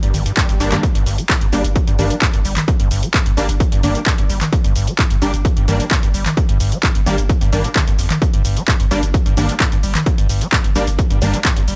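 Driving peak-time techno at 130 BPM in G minor, this hypnotic, dark passage from a longer piece pairs a squelchy, resonant square-wave acid bass riff with a deep, saturated sine sub bass sitting in the background. An up-front, overdriven drum kit of handclaps, hi-hat, shaker and toms is joined at 0.4 s by a heavy, layered electronic kick. A brief electronic swell sounds in the background near the start, and from 0.6 s aggressive, bright, detuned sawtooth rave stabs warble through chorus, reverb and analog delay, all captured in a dry, gritty cassette-tape sound.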